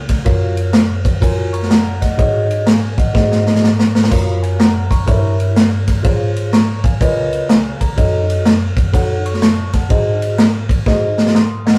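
Jubilant yet reverent, this short excerpt from a longer uptempo gospel piece swings at 124 BPM, with a mellow, clean tine electric piano carrying the accompaniment through rich chords from Gbmaj7 through Gdim7 and Db13 to a closing Ab7. A swinging big-band drum kit enters at 0.1 seconds, its punchy kick, medium-tuned snare, ride and splash cymbals sounding roomy and distant, with fills at 3.2 and 10.9 seconds. The rough rehearsal-room recording sits in a moderate booth ambience.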